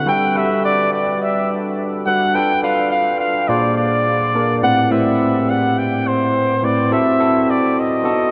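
A clear, punchy flugelhorn with vintage vibrato carries the pop-style solo melody up front, sitting between C5 and G5, over a barky tine electric piano that plays clean through a combo amp with a lush chorus, spanning A2 to B#4. This bittersweet, urban pop fragment moves at 105 BPM in a straight 4/4, tuned to A4 = 441 Hz, with both parts playing for its full 8.3 seconds over chords that drift from Gmaj7 through Bm7b5, A#9 and Am9 to F#m7b5. A huge ambient reverb with an 8.3-second tail soaks the mix in a dreamy haze.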